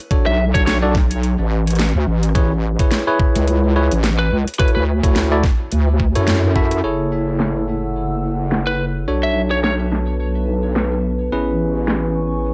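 This funky, swaggering glitch hop cut opens with a knocking electronic kick sitting up front, a dubstep kit with a huge snare and metallic, filtered hats, and bright, bell-like electric piano stabs pumping through sidechain compression and a tape echo. A heavy, saturated wobble bass joins at 0.3 seconds, its detuned square-wave growl thickened with chorus and overdrive, while a twangy, slightly broken-up lead guitar flicks out short picked phrases with echo trailing behind. The groove swings on the sixteenths, moving through jazzy seventh and ninth chords, and the whole band hits an accent at 6.3 seconds. The kick then drops out at 6.7 seconds as a deep, moody analog pad swells in on slow-attack chords with lush chorus and sidechain pumping, lending the second half a darker cast. The sound is gritty and close, with transformer saturation, a cassette-tape texture and only a light touch of room.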